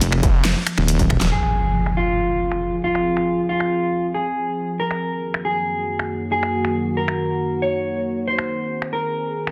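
Menacing and aggressive, this half-time heavy wobble dubstep excerpt opens on a drop where a heavy, detuned wobble bass, a brief snarling distorted saw bass and a distorted electronic kick drive under a tape-warm kit with a huge snare and low-passed bright hats, then after a drum fill and band accent at 1.2 seconds an electronic impact lands at 1.3 seconds as a dark, clean fingered electric guitar with digital delay takes the melody over a morphing wavetable pad that pumps with sidechain and undergoes a filter sweep through Fm, Ebm/Gb and Ab, all within a dense, heavily limited master and moderate digital room reverb.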